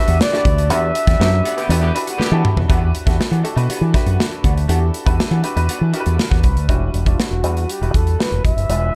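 Dark, warm small-room production frames this polished 1980s jazz-funk pop excerpt in E minor at 120 BPM, bittersweet and slick, where a breathy, whispered flugelhorn with tape echo sings the melody with vibrato and scooped notes from 0.0 to 2.2 seconds and again from 7.1, over a clear, worn grand piano with lush chorus holding an Em9, a bright, up-front fingered bass through an envelope filter, a punchy, airy studio drum kit that lands a band accent and a fill before 2.7 seconds, a dark, clean electric guitar riff with analog chorus sitting in the background, and a tight, vintage horn section adding a brief second line with tape echo.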